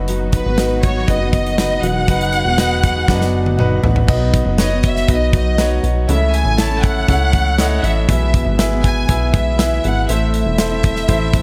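A plucky analog bass sits up front in this hopeful piano-driven pop passage, its punchy, funky sawtooth and pulse-wave tone snapping with a fast attack before decaying into a mellow, evolving tail. A modern acoustic drum kit with a small-room sound, a tight kick and a medium-tuned snare drives a straight 4/4 at 120 BPM, with hi-hat, crash, snare and toms all in play. A clear, natural baby grand piano carries the accompaniment, and a full-bodied, fingerpicked dreadnought acoustic guitar riff sits in the background. Above them a lush violin section sings the melody with focused, bowed vibrato and a smooth top, while a distant, very quiet string section with expressive portamento holds sustained chords until it stops at 4.1 seconds. A drum fill from 3.1 seconds and a piano fill from 3.3 seconds lead into the second section, where the harmony moves through A, E and A minor, all set in light reverb with a warm feel.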